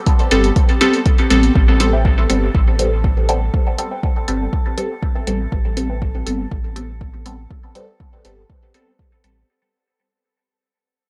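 A dry, gritty cassette-tape recording of meditative, nocturnal dub techno in A minor at 121 BPM, built on an up-front overdriven kick with a deep thud, an overdriven electronic hi-hat, a round, soft sub bass and a muted, detuned chord stab carrying phaser, dub echo and sidechain pumping, joined at 1.9 s by a mellow second stab riff with lush chorus in the background, all over a glassy, drifting sine texture, as the piece fades out from 1.6 s.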